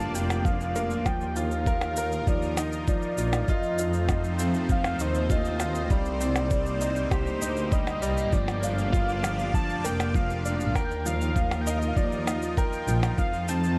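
Moving and melancholic, this piano-and-strings electronica runs at 99 BPM in a straight 4/4 over a Gm7, Ebsus2, F7 and Cm7 progression, with a velvety, detuned sawtooth synth lead carrying the melody through chorus, vibrato and shimmer reverb above a thick unison pad that pumps with the sidechain beneath chorus and phaser. A bright, woody, slightly detuned upright piano plays a riff through digital delay, while a bowed studio double bass section sits up front with lush vibrato and sidechain pumping. Tape-warm electronic shaker and percussion blips run throughout, joined at 0.5 s by a muffled, pitched-down, thumpy kick drum placed up front in a light reverb.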